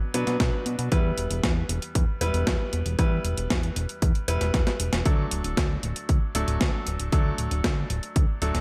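Italo disco cut from a longer piece, danceable and romantic, where bright grand piano stabs ringing through tape echo ride over a fat, detuned sawtooth bass with a filter sweep, a punchy layered electronic kick entering at 0.4 seconds, and a clean 12-bit drum machine whose hi-hat and medium-tuned snare carry gated reverb and a fill at 4.5 seconds, as the chords move from Bm through Em to D in a dry, up-front mix.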